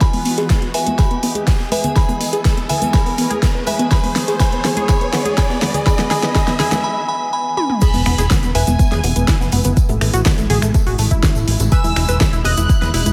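Opening on a glassy, bright FM synth bell melody with dub echo over a shimmering, ethereal ambient pad, a tight, detuned sawtooth arpeggio, a punchy up-front electronic kick, an overdriven deep house kit with fat snare and metallic hats, a very quiet gated 80s kit, very quiet bongos and congas and a background riser, this uplifting, expansive progressive house excerpt in E major at 123 BPM builds through filter sweeps on the pad and arpeggio to a break at 6.8 seconds, then drops at 7.8 seconds with an impact, a clear, biting violin section, a grainy egg shaker and, from 7.9 seconds, a funky, plucky analog bass, as sidechain pumping breathes through the pad, arpeggio, bass and violins over chords moving between Emaj7 and Amaj7.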